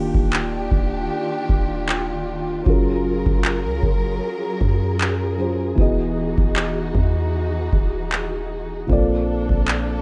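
A felt-muted upright piano, soft and dark with audible action noise, opens this tender, romantic contemporary R&B excerpt alongside a bowed studio string section rich in vibrato and portamento and a deep, boomy 808-style bass with a fast attack, while a booming analog drum machine sits up front with its deep kick and handclaps in a lightly swung 4/4 over major-ninth chords, all heard as a rough home demo in a small room with a dull top end.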